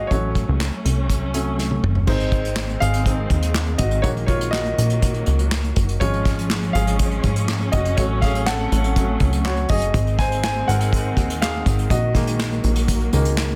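A straight 4/4 groove drives this hopeful, anthemic piano-driven pop passage, cut from a longer piece, with an up-front concert grand featured from the start in a smooth, vintage tone with deep lows and short sustain. Beneath it, a punchy, funky analog bass with a fast, decaying filter pluck pairs with an acoustic drum kit played with bundle sticks (tight kick, medium-tuned snare, dark cymbals, handclaps and toms), whose fill at 1.6 seconds leads into the next section at 2.1 seconds. A lush, bowed string ensemble holds sustained chords with vibrato and portamento, all set in a small room with light reverb under a dense, heavily limited modern master.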